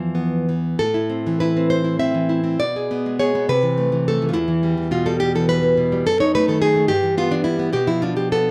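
Intimate and wistful, this brief excerpt of a romantic piece for solo classical guitar moves in a rubato 6/8 at roughly 60-74 BPM in A minor. A bright, fingerpicked nylon-string guitar sits up front throughout, its range spanning E2 to E5, with audible finger squeak and a slapback echo under light reverb in an open-air setting free of room sound. After a lone high E at 0.0 seconds, the harmony unfolds from A minor through diminished passing chords to E minor, closing on a half-diminished B chord at 7.7 seconds.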